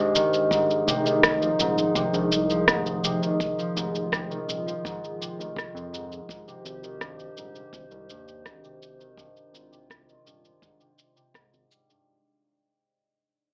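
Intimate and wistful, this folktronica excerpt moves at an unhurried 83 BPM in a straight 4/4, cut from a longer piece and fading out across its whole twelve seconds. An up-front concert harp, thumb-plucked and ringing, plays arpeggios in its low register while a filter sweeps across it, its notes trailing through tape echo and plate reverb. Alongside it a warbly, detuned pad holds sustained chords with a nostalgic, lo-fi shimmer of chorus, moving from Abmaj7 to Fm7 at 0.5 seconds and back to Abmaj7 at 6.3 seconds. A produced electronic shaker and rim click sit forward in the mix from 0.2 seconds, joined by a quiet, boomy acoustic kick played with brushes, and a round, deep analog bass with a fast, plucky attack enters at 0.9 seconds. The whole track carries an AM radio coloring and a wet studio reverb, giving it a small, faded, keepsake quality.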